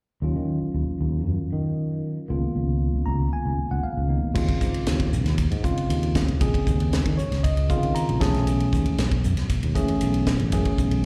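A straight, steady 4/4 pulse drives this slick electric jazz fusion excerpt, which is cut from a longer piece. A bright tine electric piano with a slapback echo and a growly, round fretless electric bass open together, the bass sustaining its notes with a punchy, amped tone. The chords move from Ebm9 to Db13, and the piano slips in a fill at 2.8 seconds. At 4.4 seconds a tight funk drum kit enters, its high-tuned snare, tight kick, hi-hat, ride and crash sounding natural and close, as if in a small room. The harmony shifts to suspended chords, Eb13sus4 and then B13sus4, while the clean, direct piano adds another fill. The whole performance comes across as a live gig heard through the venue's PA, with light recital-hall reverb around its up-front, driving sound.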